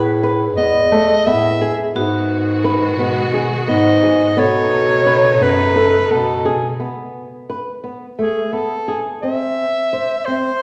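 A close-miked soprano saxophone with a classical vibrato carries the melody from the outset of this restless, shimmering contemporary chamber piece in 7/8, joined at once by a mellow, jazz-style bass clarinet in the bass and a bright, metallic vibraphone struck with hard mallets in the background. A fingerpicked flamenco guitar with fresh strings spins arpeggios up front, and at 1.9 seconds a distant, lush symphonic string section adds sustained bowed chords. Vibraphone, bass clarinet and strings fall away by 6.8 seconds, leaving saxophone and guitar in a reverberant recital hall as the harmony moves from Asus2 to C.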